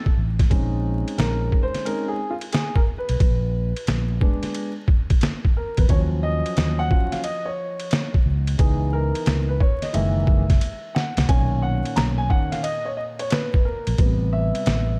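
A swung 89 BPM groove in 4/4 opens this mellow, nocturnal jazz-hop excerpt, as a gritty, pitched-down sampler-style drum kit with a thumpy kick, medium-tuned snare, hi-hat and ride cymbal sits up front, adding a brief fill from 10.6 to 11.3 seconds. A round, amped fretless electric bass anchors the low end in Bb phrygian while a dark baby grand piano with long sustain solos from 0.5 seconds over rich extended chords such as Bbm11, Ebm9 and Gb13. Digital ambience and vinyl crackle give the production a dark, warm glow.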